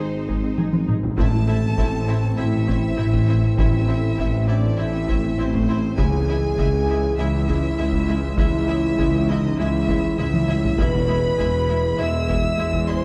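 Lush bowed strings open this vast, relentless cinematic excerpt of hybrid orchestral and electronic film score: a background violin section carries the melody beneath an intense, bright chamber violin second line, with expressive violas sliding in portamento, rich cellos and a very quiet tuba on bass, mellow close-miked French horns and a very quiet ethereal FM pad holding sustained chords, and a very quiet crystalline wavetable pluck playing arpeggios; distant taiko drums struck with heavy sticks enter at 0.3 seconds, warm trombones and a focused double bass section join at 1.2 seconds, and drum fills punctuate a dark production steeped in wet scoring-stage reverb.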